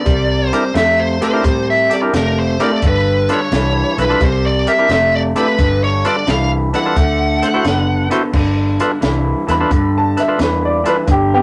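Electric blues shuffle in G mixolydian at 87 BPM, swaggering and laid-back, with an overdriven lead guitar carrying the melody until 8.1 seconds over a slightly broken-up, lo-fi guitar riff, a round foam-muted bass and a compact cocktail kit with dark cymbals, a high-tuned snare and a tight kick. A percussive tonewheel organ with key click and light overdrive fills in the harmony over C9, G9 and D9 chords, and at 9.5 seconds a woody, slightly detuned upright piano takes a solo with long sustain. The rough rehearsal-room recording carries light reverb and warm saturation, and this excerpt is cut from a longer piece.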